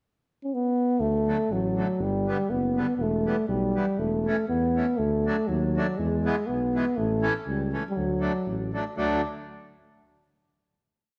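A bouncy 2/4 pulse at 120 BPM, with a light swing on the eighth notes, drives this short, jolly alpine folk piece for a dance band in D major. The euphonium opens with a pickup at 0.4 seconds, then carries a mellow, punchy melody built from motifs in balanced classical phrases, sitting up front. The tuba enters at 1.0 seconds with a mellow, smooth-topped bass, also up front, playing roots and fifths on the main beats as the harmony moves from D through G, Em, A/E, D, E and A, then home to D. The accordion follows at 1.3 seconds with reedy, mid-forward triad chords on the off-beats. A moderate recital hall reverb and a dark, warm production round out the sound, and the whole piece closes on a final chord.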